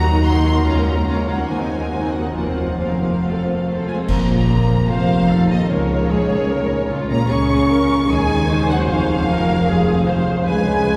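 Pulsing in a straight 4/4 at 137-152 BPM, this restless, dramatic fast romantic orchestral passage in Bb minor sets a smooth, lush violin melody over a focused second violin line, clear violas, a ringing fingerpicked harp playing arpeggios, and woody cellos with expressive double basses in the bass, while dark cymbals and bass drum strike from 0.7 to 4.9 seconds, the full ensemble lands an accent at 4.1 seconds, and a distant, shadowy French horn section sustains chords from 3.9 seconds, all bathed in a cavernous cathedral reverb heard from further back in the room.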